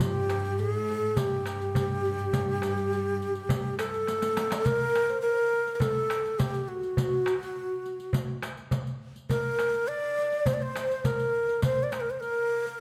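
Arabic maqam ensemble music at 103 BPM in a straight 4/4, longing and hypnotic, cut from a longer piece, with a breathy, reedy ney carrying the melody up front while a velvety, detuned synth lead shares its range very quietly with chorus and vibrato. A lush bowed cello section adds a second line only until 4.1 seconds, when a drum fill leads into the next section, and a crisp metal-shell darbuka and a riq with dark jingles keep the percussion going throughout. Close, detailed microphones capture the parts inside a moderate recital hall reverb.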